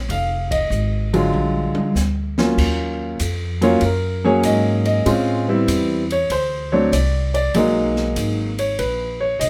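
Jazz piano trio in a cool, smoky mood, swinging at 96 BPM in 4/4, cut from a longer piece. A smooth, vintage-sounding grand piano carries the melody from the opening, sitting up front over a woody, thumpy upright bass played pizzicato on gut strings, its tone warm and close. The drum kit enters at 0.1 seconds with dark cymbals, a high-tuned snare and a boomy kick, set further back in the blend, and the band hits an accent together at 0.4 seconds before the drums take a fill from 1.3 to 2.6 seconds. The harmony moves through minor-seventh and dominant colours such as Fm7, Bb7b13, Ebm7 and D7(no3), arriving at Abm11. The trio sounds like a group playing live in one room, lightly touched by reverb.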